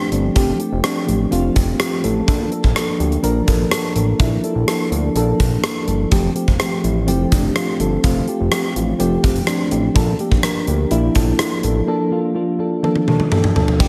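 A soft, round FM electric piano with chorus opens this uplifting, nostalgic 1980s-style pop excerpt, joined almost at once by a fat, saturated sawtooth analog bass and a tight, gated 80s drum kit with bright cymbals and rim clicks, all moving between Fadd9 and Bbmaj7 in a dreamy hall reverb until a drum fill at 12.8 seconds leads to a very quiet, brassy detuned pad that appears only at 13.8 seconds.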